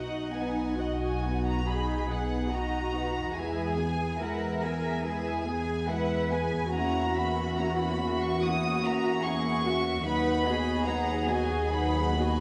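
Bathed in a lush scoring-stage reverb with a softened top end and a faint mains hum, this serene, gently rubato romantic movement for string orchestra, cut from a longer piece, floats on soft-attack sul tasto bowing, as a rich, distant first violin section carries the melody over an intimate second violin line, a pure, smooth-topped viola accompaniment, a close cello section singing with vibrato and a dark, up-front double bass, the harmony easing from B through E and F#7/E to B/D#.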